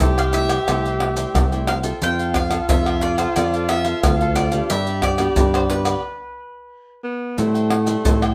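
Up front, a small-room percussion section of deep surdo, pandeiro, tamborim and maracas drives this lively, festive samba and choro excerpt at 90 BPM in 4/4, alongside a growly, direct fingered electric bass. A bright bowl-back mandolin carries the picked, double-string melody until 7.0 seconds, while a mellow, breathy tenor saxophone plays a jazz-style second line with vibrato, subtone and scooped notes, over a crisp cavaquinho in the background and a very quiet, fingerpicked nylon-string guitar. The band hits a stop from 6.0 to 7.4 seconds as the chords move from Am7/C through F and G back to Am7, all in moderate studio reverb.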